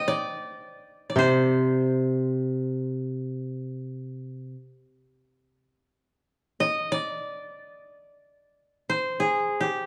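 A koto opens the recording with a melody in its upper register, its fingerpicked tone woody and placed up front. This is Japanese traditional chamber music in free time, tuned slightly low to A4 = 438 Hz, and its mood is austere and calm. At 1.2 seconds a second koto enters with a single low note as accompaniment, holding that dry, close sound until it stops at 4.5 seconds. From 3.7 seconds the pace gradually slows, and the melody koto carries on alone to the end of this brief section cut from a longer piece. A moderate recital hall reverb surrounds the plucked strings, and the overall production leans dark and warm.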